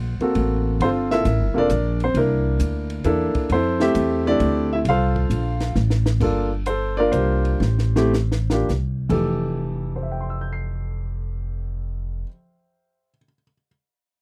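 A swung waltz feel in 3/4 drives this short cut from a longer jazz piano trio performance, with a playful yet sophisticated mood and a rich harmonic palette that moves through extended chords such as Gm11, C13 and Fmaj9. The warm baby grand piano carries the melody up front across a broad register, its natural tone marked by a short sustain. Beneath it, the pizzicato upright bass sits close and woody, its steel strings giving the low line a firm presence. A compact cocktail drum kit, sitting lower in the mix, adds dark cymbals, a high-tuned snare and a punchy kick, with a drum fill at 5.8 seconds leading into a passage where the pulse slows. The drums drop out at 9.2 seconds and the bass at 12.2 seconds, leaving the piano alone to close on an Fmaj9 colour. The dry, close sound recalls a 1970s studio, with little reverb.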